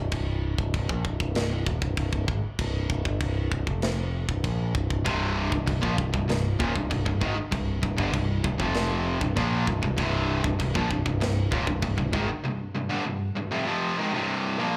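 This heavy metal excerpt sounds like a live club gig heard through the venue's PA, with small-room reverb around it. A growling, punchy picked electric bass with overdrive opens the track, joined almost at once by a tight metal drum kit whose china cymbal, kick and snare come across saturated and gritty with a rolled-off top. At 5.0 seconds two bright, distorted picked electric guitars enter on the riff, one of them compressed and scooped, both carrying a slapback echo and sitting up front. The harmony moves from a chordless opening into C minor, touching F5 briefly before returning to Cm. Heavy and relentless in a straight 4/4, the bass and drums stop at 12.3 seconds, leaving the guitars to carry on alone until the cut.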